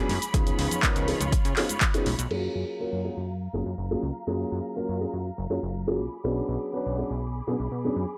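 A dark, boxy concert grand piano with phaser, a lush, distant bowed violin section and a plucky sawtooth analog bass open this joyful, funky filtered disco house excerpt together, each pumping under the sidechain, while an overdriven electronic kick, an up-front analog drum machine of crash, handclaps, hi-hat and shaker, and faint ringing congas and tambourine fall away by 2.4 seconds, leaving the piano, strings and bass under a filter sweep that runs from 2.3 seconds to the end in a dry, gritty small room.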